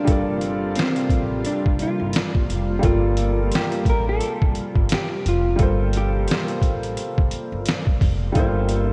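Swung sixteenths in an unhurried 4/4 give this hazy, reflective lo-fi hip hop passage, cut from a longer piece, its gentle lope. Up front, a compressed, pitched-down, muffled, sampler-style trip hop kit plays a thumpy kick, a medium-tuned snare and hi-hat, with the bass and drums arriving at 0.1 seconds. The pizzicato upright bass adds a woody low end beneath a clear, smooth vintage upright piano whose long sustain carries the accompaniment through cassette-tape coloring. A dark, clean hollow-body jazz guitar carries the fingered melody, softened by subtle chorus, delay and a low-pass filter. Behind them, a cloudy, evolving granular pad holds blurred sustained chords in the background until 8.3 seconds, and the whole dreamy mix sits in a lush hall reverb over a single lingering chord.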